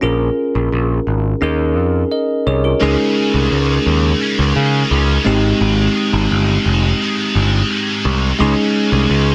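A growly, overdriven picked electric bass sits up front in this nostalgic, romantic pop fragment at 86 BPM in a straight 4/4, alongside a clean, bell-like tine electric piano moving through Bbm7, Eb7sus4, Abmaj7 and Dbsus2, and a scooped, high-gain, double-tracked electric guitar thick with distortion and ensemble chorus joins at 2.8 s, all set in light reverb and digital ambience.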